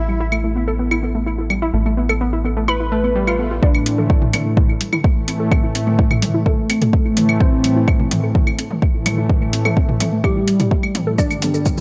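An echo-heavy mix with light reverb and a digital ambience carries this melancholic, dramatic melodic techno excerpt, where a fat, detuned analog synth brass melody with vibrato leads over a faint, crystalline wavetable pluck line with dub echo and cassette tape coloring, a warbling lo-fi pluck spins dark filter-swept arpeggios, a punchy sequencer bass drives the opening until 3.6 s, and a deep house kit of metallic hats, claves, shaker and toms plays through, before a very quiet riser gives way at 3.6 s to bright brassy pad stabs with tremolo and a deep, overdriven kick up front.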